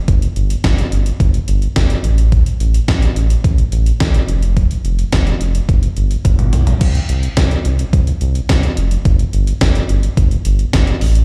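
Played back through a big sound system in a bare room with large studio reverb, this bright, nostalgic synth-pop excerpt pairs a round, deep analog bass of sawtooth and sine tones, fast in attack and sustained, with an up-front, overdriven 80s digital drum machine whose thumpy kick, gated-reverb snare, hi-hat, crash and toms run throughout, capped by a drum fill from 6.2 to 6.8 seconds that ushers in a new section.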